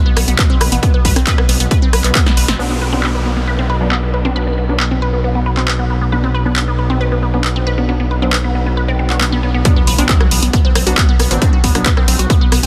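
An overdriven, up-front electronic kick hits hard at 0.4 s, drops out after 2.2 s, then slams back for the drop at 9.7 s in this hypnotic, intense peak-time techno cut at 136 BPM in B phrygian. A gritty, saturated synth bass and a juicy, squelchy resonant blip pluck riff with phaser, tape echo and 12-bit sampler grit drive alongside a punchy, overdriven drum kit of handclaps, hi-hat, rim click and filtered snare, while an eerie metallic drone sits in the background. From 2.6 s a thick, aggressive rave stab with dub echo joins a downlifter, swell and impact, and the dense, heavily limited mix carries a light digital ambience.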